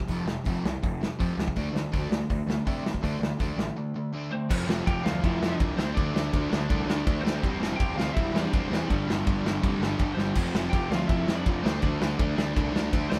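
Urgent and raw, this punk rock cut at 164 BPM puts a loose, punchy acoustic drum kit up front in a small, pumping room, while crunchy overdriven and sludgy distorted guitars churn out a riff in the background over a growly, fuzz-drenched picked bass, moving through chords like F5, D5 and G5. After a break at 3.8 seconds, a twangy, slightly broken-up lead guitar enters with a melody at 4.3 seconds, and a double-tracked, high-gain guitar joins the riff at 4.5 seconds. A drum fill at 10.2 seconds pushes the band, heard playing live together under light reverb, onward.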